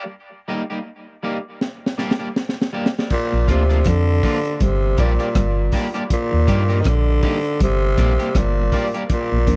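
A raspy, growling tenor saxophone enters at 3.1 seconds and takes the lead up front in this heavy, deep dub reggae excerpt, its clear tone carrying a light vibrato and a dub echo. The piece opens on a slightly broken-up, twangy electric guitar with subtle chorus, a high-pass filter and dub echo. A crunchy breakbeat kit joins with a fill at 1.6 seconds, dark and saturated, with a high-tuned snare, tight kick, rim clicks, hi-hat and dusky cymbals. Beneath the sax sits a prominent, round sine sub bass, while a clean, fingered semi-hollow guitar plays a riff in the background through ensemble chorus and dub echo. In the closing moments a mellow tonewheel organ appears, lightly overdriven, with chorus vibrato and a slow rotary speaker. The chords move among Eb, G minor and Bb over a swung sixteenth-note feel, and the dry, close 1970s-style studio sound keeps it intimate.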